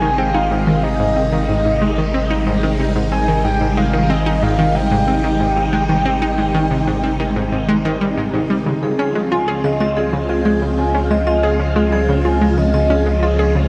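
Ambient, sequencer-driven space music at 92 BPM in Ab major, luminous and cosmic, where a deep analog bass and a bright analog pluck riff play alongside swirling, vintage phased string-machine chords, a soft, dark octave-layered synth lead with vibrato carries the melody until 8.0 s, and a metallic, ringing vibraphone takes up airy arpeggios from 8.8 s as the harmony moves from Abmaj7 to Dbmaj7, with shimmer reverb and tape echo trailing the lead, pluck and vibraphone inside a dreamy mix soaked in lush hall reverb.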